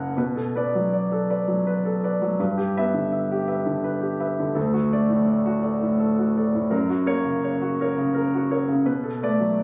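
A solo concert grand piano opens this short, intimate fragment of a longer neoclassical minimalist piece, sounding up front with a natural, warm tone and a deep bass. The playing is rubato in 3/4 around 83 BPM, in B minor with the instrument tuned to A4 = 439 Hz, and it spans from F#1 up to F#5. Its melancholic harmony moves from Bm7 through G6, D and F# before settling back on Bm7 at 8.9 seconds. The sound carries the character of a phone recording made in the room, with light reverb, a club-like ambience and some compression. The piano plays alone throughout, ending at 9.6 seconds.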